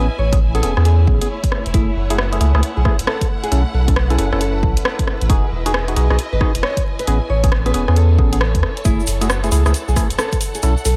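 This skippy, bouncy two-step UK garage excerpt in F# dorian at 135 BPM opens on a bed of vinyl crackle. Over it, a small, fingerpicked nylon-string guitar carries the melody through a dub echo, and hollow, mellow organ-like stabs decay through chorus, phaser, cassette tape color and the same echo. A deep, thick, saturated sub bass sits up front, while a distant, lush string section adds bowed texture with vibrato and portamento, pumping against a sidechain. At 0.3 seconds the overdriven drums arrive, re-recorded in a large room: a punchy electronic kick placed up front, plus a layered house kit of hi-hat and rim click, all swung on the sixteenths. Near the close, at 8.8 seconds, a grainy, bright tube shaker slips in close but in the background. Underneath, the chords cycle from Amaj7 through F#m7, B7sus4 and Emaj7 before returning to Amaj7 and F#m7.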